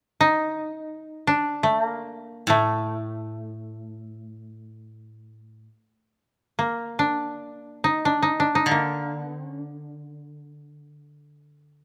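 A mellow koto opens the music at 0.2 s, carrying the melody in its middle register with a dry, woody tone plucked with fingerpicks. At 2.5 s a second koto joins beneath it in a lower range, providing accompaniment with a brighter edge while staying softer in the balance. Both instruments sit up front, captured by close, detailed microphones that reveal every pluck, with only a light reverb around them. This is Japanese traditional chamber music in free time, unfolding calmly and with an austere restraint. The passage, cut from a longer piece, lasts just under 12 seconds.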